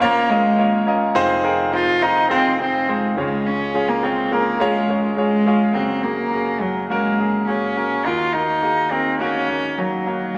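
A wet scoring-stage reverb surrounds this hopeful, anthemic pop excerpt at 104 BPM in straight 4/4, tuned to A4 = 444 Hz. A single bowed cello with a nasal, reedy gut-string tone in period style carries the melody from Gb3 to F4, while a clear, polished baby grand piano sits up front with accompaniment spanning F1 to Eb5, both playing throughout the 10.4 seconds. The harmony moves from Bbm through Fm7 and Db, then shifts at 5.8 seconds to Gbadd9 before arriving on Ebm at 8.1 seconds.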